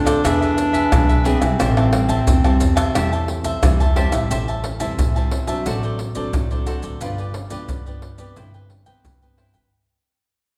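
This is a lively, yearning blend of samba and choro in A minor, moving at 89 BPM in a straight 4/4, cut from a longer piece. A clear, classical-style solo clarinet carries the melody in a narrow low register, then falls silent at 3.6 s. A crisp, picked cavaquinho and a bright, fingerpicked nylon-string guitar with fresh strings and audible finger squeak fill out the accompaniment. Beneath them, a woody, growly pizzicato upright bass anchors the low end. Maracas, surdo, pandeiro and tamborim sit close, dry and up front, led by a tight surdo. The harmony moves through E7, Am7, D7/A, G7 and Cmaj7/G, the band sits in the reverberant ring of a recital hall, and the music fades out from 4.3 s to the end at 9.7 s.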